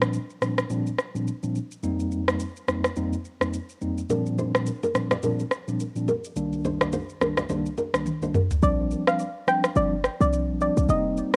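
Romantic and breezy, this afrobeats fragment cut from a longer piece rides a swung groove of electronic drum kit with rim clicks, shaker and toms under a mellow tine electric piano, while a full-bodied fingerpicked nylon-string guitar riff with analog delay enters at 4.1 seconds, and after a drum fill the kick drops out at 8.6 seconds as a soft, nasal pluck melody with chorus and delay arrives alongside a punchy, tight 808-style bass, all carrying the character of a cassette home recording in a light reverb.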